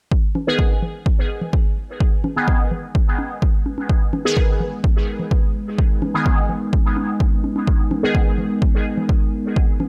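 Hypnotic and meditative, this dub techno excerpt at 127 BPM in G# minor sets a punchy, overdriven electronic kick up front beneath a warbling, lo-fi pad of dark sustained chords with chorus, reverb and sidechain pumping, tape-toned bongos and congas with dub echo, and juicy, detuned sawtooth polysynth stabs with a resonant filter sweep, phaser and dub echo, all resting on one G# minor chord in a dry, gritty hardware recording.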